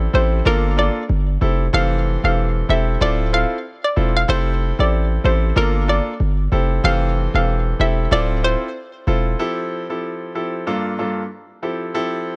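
A punchy, heavy 808-style bass anchors this joyful, romantic afrobeats groove with a gentle swing until 9.4 seconds, while a brilliant, polished concert grand piano carries the Gm7, Fmaj7 and Dm9 harmony up front and a hollow, bouncy square-wave pluck, detuned and ring-modulated with chorus and tape echo, sings the melody above, the whole mix sitting in a studio reverb.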